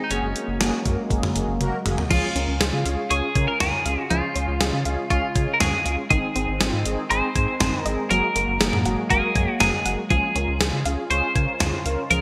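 A straight 4/4 beat at 120 BPM from a gated 80s digital drum machine, with a thumpy kick and gated-reverb snare sitting up front, drives this bright, upbeat synth-pop excerpt in Db major, where a clean, twangy twelve-string electric guitar carries the melody through digital delay over mellow, brassy synth brass with chorus, a swirling phased analog pad in the background and a round, deep analog bass, while a lush unison pluck enters at 2.1 s after a drum fill to add delayed arpeggios, the whole set in a 1980s-style digital production with moderate hall reverb.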